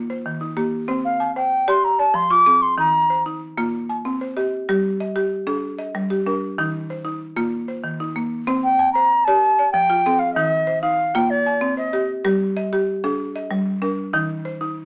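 A rippling 12/8 cycle at 127 BPM drives this southern African traditional piece in the manner of interlocking mbira patterns, set in C equiheptatonic with a warm mood. A buzzing marimba struck with hard mallets plays arpeggios throughout; its hardwood bars sound woody, dry and percussive, with a vintage, band-limited edge. An airy, bright baroque flute carries the melody up front in two brief phrases, from 1.0 and again from 8.6 seconds, with a straight tone and crisp attack, all within a moderate studio reverb.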